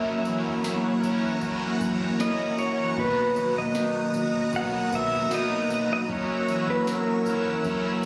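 A twangy pedal steel guitar, up front and played with slide and volume swells through delay, carries the dreamy, floating melody of this 77 BPM dream pop piece in B major, over a crunchy overdriven guitar with harmonic tremolo, a swirling phased string machine, fingered arpeggios on a dark, clean electric guitar with analog chorus, and a punchy, round FM bass in the background. At 0.3 seconds a soft vintage rhythm box joins with deep kick, crisp snare, tambourine and toms, itself overdriven and re-recorded in a large room, as the harmony moves from F#7 to Bmaj7 and back. The sound has the roomy, slightly distant character of a phone recording in a club, with light reverb and digital ambience.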